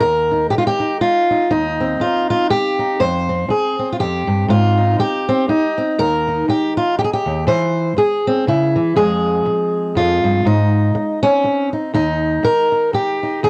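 Hopeful and nostalgic, this short folk passage features a solo fingerpicked steel-string acoustic guitar, dark in tone and placed up front, moving at 121 BPM in a lilting 3/4 with a gentle swing in Eb mixolydian. The chords drift from Ebsus2 through Eb69, F5, Ab, C/E and Fm before settling on Eb at 11.9 seconds, the guitar ranging from Eb2 up to C5. A light reverb and the soft grain of a cassette home recording lend the sound an intimate, worn character.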